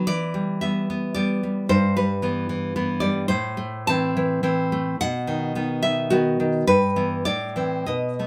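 Romantic solo classical guitar in E minor, this short excerpt moves in 3/4 at about 109 BPM with an uneven, rubato feel that gives it an intimate, wistful mood. The fingerpicked nylon-string guitar sits up front, bright and full-bodied with a deep classical tone, and close, detailed microphones catch the finger squeaks under a light reverb. Across its 8.3 seconds the harmony passes from Em through Em/G, Am and B before returning to Em/G and Am.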